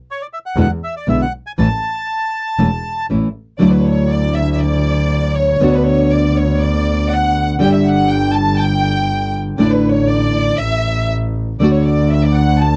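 A rubato 4/4 pulse at 120 BPM carries this nostalgic, passionate tango fragment: a reedy, bright bandoneon sings the opening melody until 3.1 seconds over fingerpicked, full-bodied nylon-string guitar and a boxy, bowed double bass with vibrato and an airy bow, before a lush, smooth violin section takes the featured line from 3.6 seconds as the key moves from A major to D major, heard in a dry, close 1970s-style studio setting.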